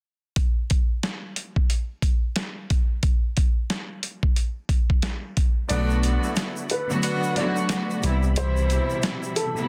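The recording is dense, dry and heavily limited. This moody, reflective boom-bap hip-hop fragment opens at 0.4 seconds with a gritty, pitched-down, sampler-style drum kit whose thumpy kick, medium-tuned snare and hi-hat sit compressed and up front over a swung groove. At 5.7 seconds the kick drops out as the rest of the band arrives over Bm7 and then Cmaj7: a mellow, clean tine electric piano carries the bass up front, and a veiled, con sordino string section bows soft-attack accompaniment with vibrato and a cassette-tape tint. A woody, boxy upright piano picks out the melody, and a bright, reedy tonewheel organ holds very quiet sustained chords through a slow rotary speaker with key click. A jazz-style saxophone section adds present, vibrato-laden stabs with delay until 7.7 seconds. A grainy acoustic tube shaker ticks along in the background.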